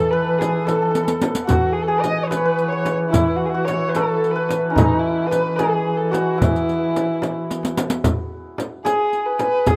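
A 6/8 pulse at 74 beats per minute, counted in dotted quarters and played straight, carries this stately, passionate Persian modal ensemble piece in E dastgah mahur, tuned slightly high to A4 = 443 Hz and cut from a longer work. Up front, a dark, woody kamancheh bowed by one player sings the melody between D#4 and D#5 with vibrato and portamento, its tone somewhat distant. Beneath it a hammered santur adds a shimmering, ringing second line from C#4 to C#5, while a mellow, roomy duduk holds a folk-style drone on E3 until about 8.1 seconds. The percussion brings close, bright riq jingles struck with hard hands, a deep tombak sitting in the background of a small room, and a small frame drum played with soft hands that joins at 0.4 seconds, with drum fills marking 1.0 and 7.5 seconds. Light reverb and a rough home demo mix give the recording an informal feel, and a new section begins at 8.0 seconds.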